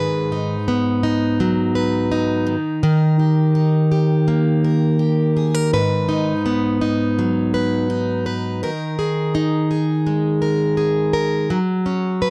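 This is a reflective, tender pop piece in G# minor, cut from a longer work and moving at 83 BPM in a straight 4/4. A picked, plugged-in steel-string acoustic guitar carries it alone from start to finish, its dreadnought body giving a bright, full-bodied tone that sits up front. The part ranges from G#2 to B4 as it moves through G#m7 and D#, returns to G#m7, then settles on D#sus4 before landing on F#5 at 11.5 seconds. The sound is a dry, close 1970s-style studio recording touched with light reverb. It runs for 12.3 seconds in all, an intimate solo passage.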